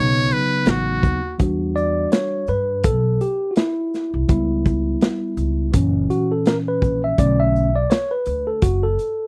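Nocturnal and smoky, this short jazz-hop cut from a longer hip hop piece sits at 83 BPM in E dorian, with a swung sixteenth-note feel. A muted trumpet opens with a brief solo that ends at 1.4 seconds, its tone buzzy and breathy, with light vibrato and scooped notes. The mellow tine electric piano then takes the lead for the rest of the piece, clean and direct, while an upright bass plucks a woody line underneath. The crunchy breakbeat kit enters at 0.3 seconds with hi-hat, kick, shaker and snare, sounding gritty and saturated with a punchy kick and a rolled-off top, and it sits loudest in the mix. The chords move from B7 to Em7, then through C#m7b5 and F#7 to Bm7, in a dry, close recording with a 1970s studio character.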